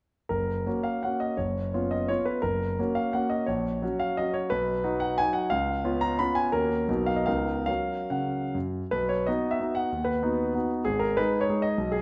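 A solo concert grand piano opens at 0.3 s with a proud, rustic romantic dance in 3/4, its dotted rhythms pushed and pulled by rubato across a tempo that ranges from 132 to 204 BPM. The instrument sounds natural and up front, with a deep bass reaching down to F#1 and an upper register extending to B5, set in a moderate recital hall reverb captured by close, detailed microphones. The harmony moves through F# major before shifting to B major at 8.9 s, and this fragment of a longer piece ends at 12.0 s.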